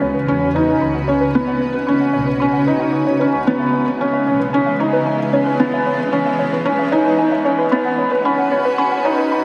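A straight 4/4 pulse at 113 BPM carries this intimate, cinematic piano and strings electronica build-up, where a soft, felt-muted upright piano riff sits up front with analog chorus and diffuse delay, a warbling, lo-fi pluck spins arpeggios through chorus and a filter sweep, a cloudy, granular pad holds sustained chords, and a reedy bowed double bass section stays in the background, all soaked in a huge, dreamy reverb over chords moving from Bsus2/C# to C#m7 and back.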